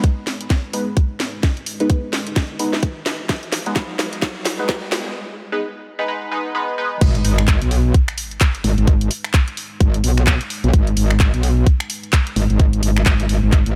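Bass house with a gritty, bouncy swing, cut from a longer piece, opens on a build-up where a nasal, band-passed chord stab with phaser, chorus and tape colour sweeps through its filter over a tight, up-front kick, a garage kit with a cracking snare, hi-hat, claps and snaps, and a very quiet, moody pad holding sustained chords underneath. A drum fill and a background riser lead into the drop at 7.0 seconds, where the stab stops and an impact and sub drop hit as a metallic, saturated FM wobble bass takes over up front, pumping against the kick. The mix carries light reverb.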